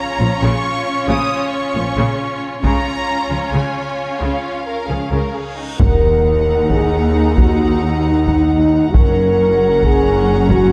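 Cinematic epic orchestral film score in Eb minor and a straight 7/8 at 269 BPM, dramatic and grand, where distant, lush violin sections carry a high melody and a second line over bowed violas, a rich cello section and intense double basses, punchy horns join with sustained chords at 1.1 s, close, dry taiko struck with hard sticks enter at 2.6 s, and a huge, bright reverse cymbal swells into an impact at 5.8 s, all in a moderate scoring-stage reverb with a dark, warm production over chords moving from Bbm through Db and Ebm to Gb in this excerpt cut from a longer piece.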